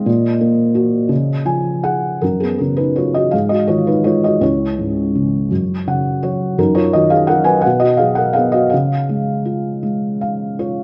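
Peaceful and tender, this short passage of lyrical classical solo piano unfolds in 6/8 with uneven, rubato beats, moving from a brief opening idea into a longer second section at 2.2 seconds. A felt-muted upright piano carries everything, its soft, mellow tone sitting up front with thick felt and audible action noise lending an intimate closeness, while brief fills appear at 1.1, 5.5 and 9.8 seconds. A moderate recital-hall reverb surrounds the dark, warm production, and the clip is cut from a longer piece.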